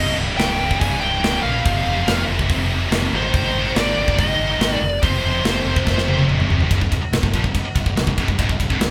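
Recorded with light reverb, this sounds like a band playing live in one room, with the drums and rhythm guitar up front in the mix. It is a short, dark and epic heavy metal passage in C minor, moving at 143 BPM in a straight 4/4, cut from a longer piece. A double-tracked, scooped high-gain rhythm guitar churns out a low picked riff over chords on C, F and Ab, while a growling fingered electric bass with overdrive sits underneath in its deepest register. A tight acoustic metal kit joins at 0.4 s, with a polished, airy big-room sound, bright cymbals, a medium-tuned snare and a tight kick, and it plays a fill from 5.9 s that carries into the next section. Above it all, a distorted, high-gain lead guitar picks out a melody in a higher register until it drops out at 6.2 s, leaving the riff, bass and drums to carry the closing bars.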